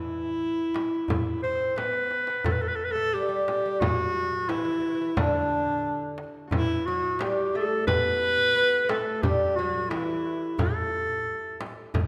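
A breathy, clear clarinet with light vibrato and a soft attack opens up front, carrying a melancholic, soulful melody in E makam ussak at 89 BPM, while a woody, fretless oud with double strings plays a second line beneath it and a deep clay-shell darbuka sounds close and dry. A small, bright frame drum played with soft hands joins at 0.8 seconds, a very quiet, ringing Celtic harp adds another second line from 1.4 seconds, and a drum fill from 1.8 to 2.5 seconds leads into the next section. The ensemble sits in a lush concert-hall reverb in this short cut from a longer Turkish makam piece, with the clarinet's jazz-inflected phrasing standing out as the solo voice.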